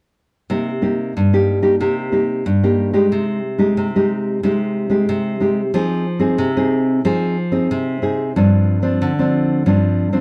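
A thumb-plucked nylon-string guitar carries this short samba fragment alone, sitting up front with a full-bodied, classical tone and finger squeak audible on the strings. It plays accompaniment from 0.5 to 10.2 seconds at 92 BPM in a straight 4/4, ranging from G2 to Ab4 in C minor, tuned slightly sharp to A4 = 441 Hz. The harmony moves through Cm7, Abmaj7/C, Fm7 and G7sus4, leaving the passage hanging on that suspended chord as the clip is cut from a longer piece. The mood is yearning and nostalgic, and the acoustic guitar's warm character suits that wistful quality. A moderate studio reverb adds a sense of space around it, within a dark production.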